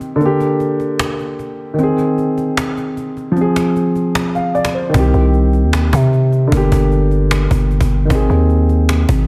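Dark and eerie, this trap-flavoured hip hop clip at 152 BPM in a half-time feel opens on a mellow, boxy grand piano, filtered and up front, moving through Gm, Ab and Fm over a snappy cajon with hard-handed snares in a live room, before the piano's brief fill at 4.2 seconds leads into a growling, saturated 808-style bass that enters at 4.9 seconds and sits buzzy and forward beneath the rest.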